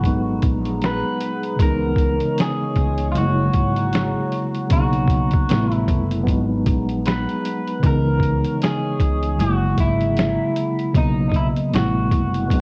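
Melancholic and hazy, this lo-fi hip hop excerpt sets a slightly broken-up electric guitar melody, touched with subtle chorus and tape echo, over a mellow tine electric piano up front, a woody, growly pizzicato upright bass, a muffled, pitched-down sampler-style drum kit with a thumpy kick and 12-bit grit, and a dark, detuned analog pad with chorus and phaser sitting in the background until 10.9 seconds, all wrapped in cassette-tape haze and light reverb.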